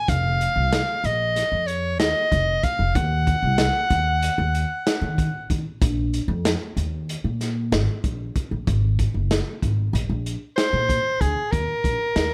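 A bright, forceful soprano saxophone with light vibrato carries the melody in this intricate, brooding progressive instrumental, dropping out at 5.5 seconds and returning at 10.6 seconds, over a woody, dark pizzicato upright bass and a crunchy, saturated breakbeat drum kit with a tight kick and gritty, rolled-off top. Set in 9/8 at 189 BPM counted in eighths and rooted in Eb dorian, the short cut moves through Ebm and Gbsus2 before a chordless stretch and an Eb5 close. All three parts sit up front in a studio room touched by light reverb.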